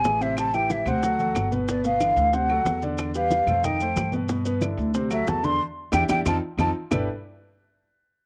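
A breathy, hollow flute carries the melody up front with vibrato and tongued phrasing, taking a solo from 1.7 to 6.9 seconds in this lively, sophisticated Afro-Cuban jazz fragment at 184 BPM in G major. A clear, intimate grand piano with audible action noise shares the foreground over a growly pizzicato upright bass, while round, low-tuned bongos, soft-handed congas and woody claves sit in the background and grainy maracas sound close. Drum fills arrive at 1.2 and 6.1 seconds, a band accent lands near the close, and the flute and piano carry a cassette tape tint inside a small room with moderate spring reverb.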